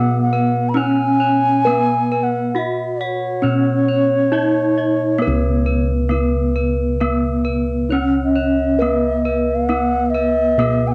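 A bright, reedy low xiao, pure-toned and tongued with vibrato, sits up front in this serene, shimmering Javanese gamelan fragment over a ringing bronze metallophone melody struck with horn mallets, whose paired tuning produces beating shimmer in a boxy small room, while a second, close-miked metallophone adds quieter, dry arpeggios and round bossed gongs carry the bass, with cassette-tape colouring on the xiao and both metallophones and plate reverb on the xiao and arpeggios.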